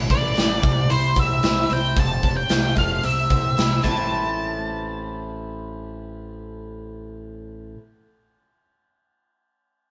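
Angsty and brooding, this short cut from a quiet-loud alternative rock piece moves at a straight, steady pulse, with a bright, boxy picked archtop guitar playing arpeggios over a growling, overdriven bass and a dark, fuzz-distorted lead guitar carrying the melody up front. A big, punchy acoustic drum kit with a medium-tuned snare drives the opening, then drops out after a fill at 3.8 seconds, leaving the guitars and bass to carry on until about 7.7 seconds. The band sounds as if playing live together in a stone room with moderate reverb.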